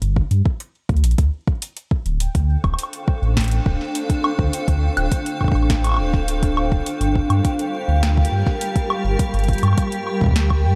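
A straight 4/4 pulse at 103 BPM from a booming analog drum machine, with crisp snare, metallic hats, woodblock and delay, and a deep, tape-warm electronic kick up front from 0.2 s, drives this intricate, melancholic IDM excerpt, where a dark, rumbling detuned saw bass with tube saturation beats underneath, a mellow pulsing gated texture on a high G drifts in the background from 2.2 s, and a cloudy, evolving granular pad with subtle chorus blurs Dm7 into Gm7 from 3.0 s, the whole mix dreamy and soaked in huge ambient reverb.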